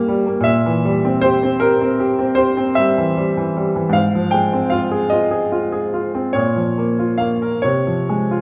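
A slow, rubato lilt in 9/8 sets the pace, with the dotted-quarter pulse drifting between 45 and 53 BPM in this short romantic nocturne for solo piano. The mood is mournful and yearning, and the passage is cut from a longer piece. A single grand piano carries everything, ranging from Ab2 up to G5 with a brilliant, vintage tone that sits up front and decays quickly. The harmony moves from C7/Bb at 0.5 seconds to Fm/Ab, then Bbm, settling on Fm/C near 7.6 seconds. Moderate recital hall reverb surrounds the instrument, giving its short notes a gentle halo over the whole 8.4-second passage.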